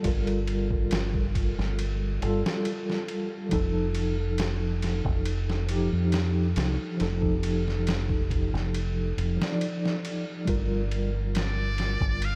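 Melancholic and smoky, this trip hop excerpt drifts at 69 BPM over a Gm7 to F7 progression, with a mellow tine electric piano, shimmering with tremolo and tape echo, carrying the accompaniment above a deep, round fingered electric bass. A gritty, pitched-down sampler-style kit of thumpy kick, medium-tuned snare and ride cymbal sits compressed and tape-toned, while the dreamy mix is soaked in a huge ambient reverb and dusted with vinyl crackle. At 11.4 seconds a buzzy, thin trumpet with a metal mute enters with a vibrato-laden solo line.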